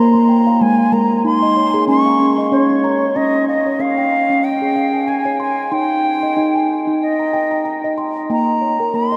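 Swung sixteenths in 4/4 at 94 BPM carry this dreamy, calm world meditation in Db lydian, cut from a longer piece, where a round, ringing steel tongue drum struck with rubber mallets plays close-miked arpeggios alongside a bright bamboo bansuri melody with vibrato and tongued notes, both parts up front and touched by tape echo, the pair floating in a vast, echoing space of huge ambient reverb as the harmony moves from Bb5 through Ab, Db and Eb to Bbm.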